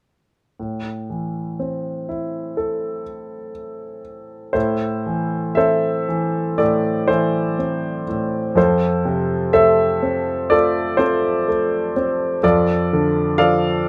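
A clear, intimate grand piano sits up front in a light reverb, its long sustain and audible action noise giving the sound a polished closeness. This dark, reflective fragment of a lyrical classical solo moves at a rubato 61 BPM in 4/4 in A minor, spanning F2 to F5 as it moves from A minor to F at 8.6 seconds and settles on D minor over F at 12.4 seconds. The piano plays alone from 0.6 to 13.9 seconds, shifting into a new section at 4.6 seconds.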